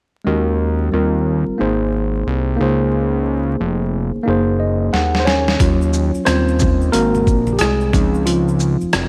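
Jazz-hop with a cool, mellow mood and a loose sixteenth-note swing, this excerpt opens on a worn, slightly out-of-tune tine electric piano, clean and up front, playing jazzy chords. A fat, detuned sawtooth analog bass joins almost immediately, its saturated, sustained tone shaped by a plucky filter and a thick, evolving character. A boom bap sampler-style drum kit arrives with a fill at 4.9 seconds, its pitched-down, gritty, overdriven sound built on a thumpy kick, a medium-tuned snare, rim click, hi-hat and shaker. At 5.6 seconds the electric piano moves into a solo, while compressed maracas and hard-hand congas sit bright in the background. Light reverb, digital ambience and a layer of vinyl crackle frame the whole piece.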